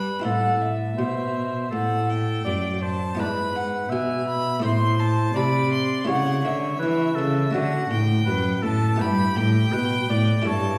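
Classical baroque-style sonata movement excerpt at 82 BPM in 4/4, flowing and radiant, where a clear, focused bowed violin with vibrato carries the melody above a distant, roomy oboe second line, a muted, lute-like buff-stop harpsichord plucks a dry accompaniment in the background, and a rich, smooth-topped cello played by one musician sits up front on the bass, all heard from further back in a recital hall with a long reverberant tail as the harmony moves from A minor through E7/G# and A7/C# toward D and Em/G.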